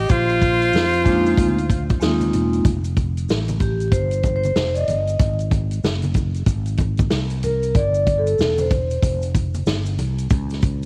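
A cassette-recorded home session with vinyl crackle and small-room ambience frames this cool, smooth jazz-hop cut, a fragment of a longer piece at 94 BPM in a swung 4/4, moving through Bb9sus4, Fsus2, Gbadd9 and G7sus4. A close-miked, breathy tenor saxophone with vibrato carries the melody and a soft-attack, straight-toned flute adds a second line, both only until 2.0 s, over a growly, amped fretless bass, a vintage kit with a punchy kick and rolled-off top, and bright, dry maracas and congas tucked in the background. A metallic, ringing vibraphone played with medium mallets and its motor off sits up front as accompaniment and takes a solo from 2.6 s.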